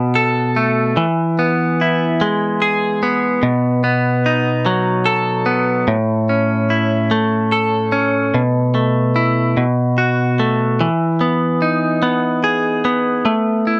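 A bright, twangy clean electric guitar, recorded direct, picked and compressed, plays alone and up front throughout this heartfelt, swaying pop fragment in E major at 49 BPM in 6/8, moving from Asus2/B through E, B7, A, B7sus4 and B5 to Emaj7 at 10.8 seconds before settling on Asus2, all with light reverb in a dry, close 1970s-style studio sound.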